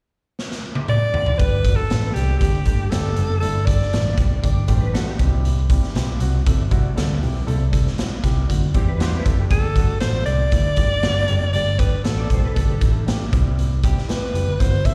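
A gritty, punchy garage drum kit sits up front in this joyful, uplifting excerpt of 1960s-style soul, opening with a fill at 0.4 s before a round, foam-muted picked electric bass and a dark, woody upright piano enter at 1.4 s, while a clear, close-miked alto saxophone with vibrato and scooped notes carries the melody, an electric guitar riff through a small old amp sounds slightly broken-up and lo-fi in the background, and a distant horn section with light vibrato adds a brief second line at 8.7 s, the performance heard as a live gig through the venue's PA in a recital-hall reverb.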